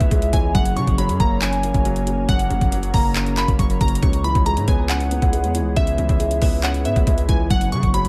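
Eerie and dark, this half-time trap excerpt moves at 138 BPM in C# dorian, with glassy digital keys carrying a high melody through chorus and tape echo over a dark, intimate concert grand piano whose audible action noise sits in its vintage tone. A faint FM pad adds ethereal sustained chords with ensemble chorus and built-in reverb, while a saturated, aggressive 808-style bass and an up-front trap kit of knocking kick, metallic hi-hats and handclaps drive the low end. The chords cycle between C#m7 and F# throughout the 8.1 seconds, all set in an echo-heavy digital ambience.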